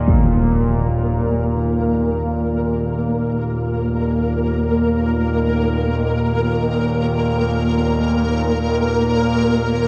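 Bathed in a huge, cavernous reverb, this short cut from a longer dark ambient drone piece floats in free time with a brooding, shadowy mood. A low analog drone, chorused and up front, sustains a warbling, detuned sawtooth-and-pulse tone built on an Eb5 chord from the start. At 0.6 seconds a bright, flickering granular texture fades in above it, its grainy triangle tone carrying its own reverb.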